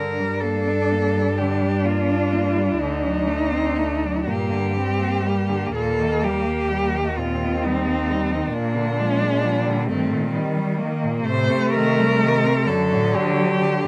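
Yearning and elegiac, this slow, rubato classical passage for four cellos in G minor moves in 6/8 at 40-45 BPM, counted in dotted quarters, across 13.9 seconds cut from a longer piece. Up front, a rich, bowed cello sings the melody between C4 and C5 with vibrato, a soft attack and expressive portamento. Beneath it sit an intense second line with a smooth top, a more distant accompanying cello that also slides expressively, and a woody, lightly vibrated bass placed close, all framed by light reverb and detailed miking as the harmony passes from Gm through D(b9), Eb and Bb7 to Adim and a closing D/F#.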